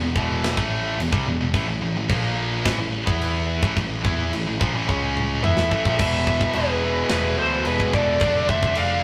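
Aggressive heavy metal bursts in with two distorted, picked rhythm guitars playing a high-gain riff, one bright and up front and the other set back, over a growling, overdriven picked bass and a tight acoustic drum kit with bright cymbals, a medium-tuned snare and a tight kick. After a drum fill starting at 4.9 seconds, a dark, distorted lead guitar enters at 5.4 seconds with a high melody, shadowed in the background by a brighter second lead line. The rough rehearsal-room sound carries a moderate studio reverb, and this cut from a longer piece ends at 9.0 seconds.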